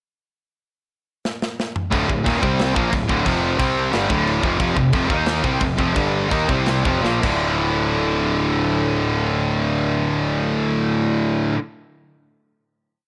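A straight 4/4 metal half groove from a tight, rolled-off acoustic kit drives this short, aggressive heavy metal piece in D phrygian at 154-180 BPM, as a drum fill brings in three stacked power-chord riffs at 1.9 s (a bright, up-front high-gain guitar, a scooped high-gain guitar and a compressed, double-tracked fuzz guitar further back) along with a growly, overdriven fuzz bass doubling the riff in driving eighth notes, before the tempo slows from 4.6 s into a final hit at 7.4 s in a small room.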